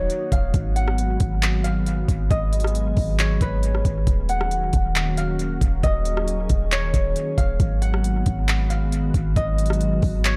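Washed in echo-heavy digital ambience, this melancholic, ethereal atmospheric cloud-rap excerpt rides a half-time hip hop groove. A ringing, fingerpicked Celtic harp melody trails dub echo over a glassy, warbling FM pad that carries ensemble chorus, reverb and sidechain pumping, while a deep, boomy 808-style bass and a smooth R&B drum kit sit up front. The kit's knocking kick, handclaps, hi-hat and rim click sound as the harmony moves between Ebm7 and Abm7 chords.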